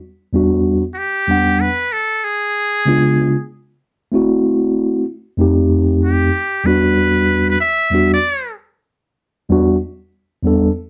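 Hip hop with a mellow, cool jazz flavour, this short excerpt sways at a swung groove, its dark production sitting in a wet studio reverb. A mellow tine electric piano, clean and heard through its built-in speakers, carries the accompaniment up front from 0.3 seconds, moving through rich chords such as Em9, C#7b9 and F9. Over it a trumpet with a metal mute enters at 0.9 seconds as the soloist, buzzy and thin with a light vibrato and soft attack, playing a jazz-style line until 8.5 seconds.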